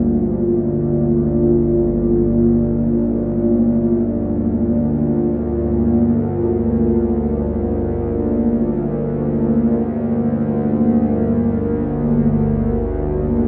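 A tense, string-like bowed drone with vibrato sits low beneath a deep, detuned analog pad holding sustained chorus-touched chords from the first moment of this unsettling, desolate dark ambient excerpt in free time, shifting from Bb to F# at 11.3 seconds inside a huge, long-tailed reverb and a warm production.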